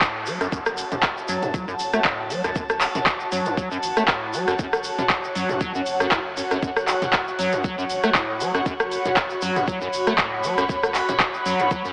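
Heard through a lo-fi, AM-radio filter and bathed in a moderate lush hall reverb, this short acid house cut from a longer piece moves at 118 BPM in 4/4 with a 55% swing on the sixteenths, sitting on a single F# minor chord throughout. A squelchy, resonant square-wave acid bass carries the riff between F#2 and A3, its filter sweeping over fast-attack, decaying notes, roughened by overdrive, tape echo and 12-bit sampler grit, softened by a lush chorus, and pumping against the kick. An up-front analog drum machine, re-recorded in a large room, supplies handclaps, metallic hi-hats, rim clicks and toms alongside a thumpy, sampler-style kick, while a grainy, close and dry tube shaker ticks along in the background. Over it all floats an airy, breathy pad built from detuned triangle and sawtooth tones with a noise layer, spanning F#4 to B5 with a slow attack and long release, colored by chorus and phaser and pumping in step with the kick. 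A deep, round sine sub bass enters at 0.4 seconds underneath, tube-saturated and also pumping, while a very quiet downlifter sounds from the start until 2.6 seconds. The mood is hypnotic and raw, a single-chord groove that holds steady for its 11.9 seconds.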